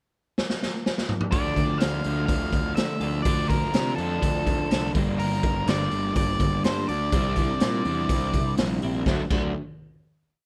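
A straight 4/4 pulse at 124 BPM drives this short, cool and restless indie rock piece in D minor, opening with a saturated garage drum fill at 0.4 seconds that sits up front with a punchy kick and a pumping small-room sound. At 1.3 seconds the band arrives: a warm, overdriven picked bass in driving eighth notes, a crunchy guitar ringing chords through lush chorus and slapback echo, a twangy, compressed twelve-string chiming chords in the background, and a dark octave-fuzz lead with slapback echo weaving a free melody over Dm, Gmadd9 and Cadd9. The dry, close sound carries through to a final D chord at 9.1 seconds.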